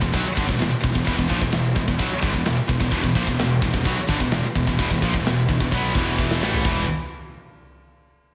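An up-front, bright high-gain guitar drives a relentless, aggressive heavy metal riff, joined low in the mix by a scooped high-gain guitar and a punchy, fuzz-laden bass. A tight, gritty drum kit sits forward with crash cymbal, kick, snare and toms, and a drum fill at 6.2 seconds leads into a change from E minor harmony to a bare E5 power chord at 6.6 seconds. Light reverb and a small-room ambience frame this brief cut from a longer piece.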